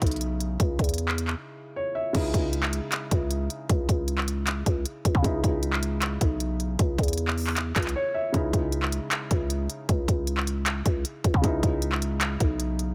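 A half-time trap groove from a crisp, up-front electronic drum kit of hard-clipped kick, handclaps, hi-hats and crash carries this melancholic, menacing hip hop excerpt, where a buzzy, growling 808-style bass with a fast attack and decaying tail sits beneath a soft, low-pass-filtered felt-muted upright piano whose mellow, intimate tone reveals audible action noise, all in a dry, close sound, with a brief break at 1.4 seconds and the drums dropping out for a moment at 8.0 seconds.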